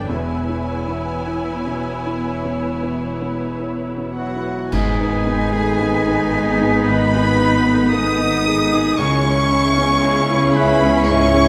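Cinematic, emotional film score for orchestra, moving and hopeful, drifting in a rubato 4/4 at roughly 51-58 BPM, cut from a longer piece. A rich, expressive violin section sings the high melody over a woody second violin line, while a soft, felt-muted upright piano with a mellow, vintage tone, a lush viola section and a ringing, fingerpicked concert harp playing arpeggios fill out the accompaniment. The bass rests on a focused, very quiet cello section and a close, bowed double bass section, and dark cymbal swells, clash cymbals and concert bass drum add weight until 6.8 seconds. At 4.2 seconds a close-miked solo oboe enters with a roomy French horn section holding sustained chords. At 4.7 seconds the music settles into G# minor on a band accent as a pure, silver concert flute and a very quiet solo clarinet join, all bathed in a moderate scoring stage reverb.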